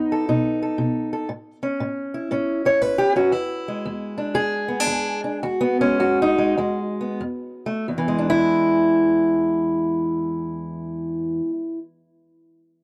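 A boxy, fingerpicked steel-string parlour guitar opens this gritty, laid-back acoustic country blues excerpt, swinging in 4/4 in E mixolydian at 86-119 BPM and moving from B7 to A, then to E7. The tempo slows from 3.3 to 7.9 seconds, passing through an F chord before settling on E7 as a new section begins. The guitar sits up front in a dry, close 1970s-style studio sound and plays on its own until 11.8 seconds.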